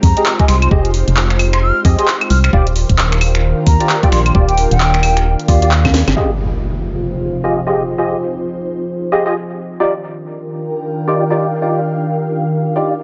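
Heard through a moderate digital plate reverb with a dulled, rounded top end, this bouncy, soulful two-step garage excerpt swings on an overdriven, knocking kick and a layered house kit of cracking snare, hi-hat, claves, finger snaps and handclaps, re-recorded in a large room and filtered dark, while an up-front organ-like FM bass pumps beneath. A mellow, airy concert flute with vibrato sings the melody through dub echo, and a nasal, percussive organ stab recurs across the whole passage, treated with ensemble chorus and echo, over silky vintage string-machine chords and a breathy, detuned pad that both pump with the beat. The flute, bass and drums drop out after a drum fill and band accent just before 6.2 s, where an electronic impact hits and leaves the strings, pad and stabs drifting over the Fm9 and Ebmaj9 changes until 13.0 s.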